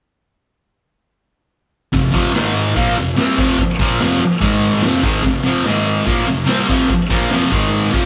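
Menacing and raw, this short cut from a longer garage rock piece drives along at 145 BPM in a straight 4/4, centred on F minor. A thick fuzz guitar carries the riff from 1.9 seconds, bright and double-tracked, sitting up front in the mix and ranging from F2 to C4 as it moves between F5 and Ab5 power chords with a brief F minor chord near 4.8 seconds. Beneath it, a raw garage drum kit of hi-hat, kick and medium-tuned snare enters at the same moment, its punchy kick and gritty, saturated tone softened by a rolled-off top. The kit sounds as if caught in a bright stone room that pumps audibly, while the whole band plays live together in a large studio with moderate reverb. The drums stop at 8.0 seconds, and the guitar continues until 8.1 seconds.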